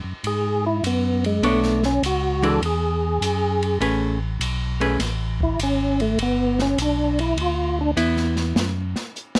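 A swung 4/4 groove at 101 BPM carries this late-night, bluesy soul jazz organ trio excerpt, where a fat tonewheel organ bass with key click and slow rotary speaker underpins a clear, percussive tonewheel organ melody with third harmonic percussion and chorus vibrato, a dark, smooth acoustic drum kit with punchy kick and medium-tuned snare, and a clean, picked hollow-body archtop guitar entering at 1.4 seconds, all closely miked and dry as the chords move from Eadd9 through Bm9 and Amaj9 to G6.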